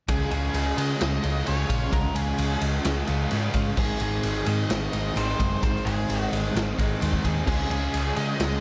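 Light reverb and small-room ambience wrap this hazy, blissful slice of shoegaze and dream pop rock, cut from a longer piece and moving at 130 BPM in a straight 4/4 in Db major. Up front, a raw garage drum kit pumps in a bright stone room, with a punchy kick, medium-tuned snare, crash and ride sounding saturated and gritty with a rolled-off top. A dark, round hollow-body short-scale bass, fingered and amped, sits beneath, while a very quiet, jingly tambourine sounds distant in a large room. Tucked in the background, a thick fuzz guitar with subtle chorus and an overdriven, compressed guitar with reverse reverb pick riffs, as a twangy clean guitar recorded direct picks arpeggios through light chorus and slapback echo. Above them, an octave-fuzz lead guitar carries the melody with distortion and its own slapback echo, while the harmony moves from Db to Ab at 3.8 seconds and returns to Db at 7.5 seconds.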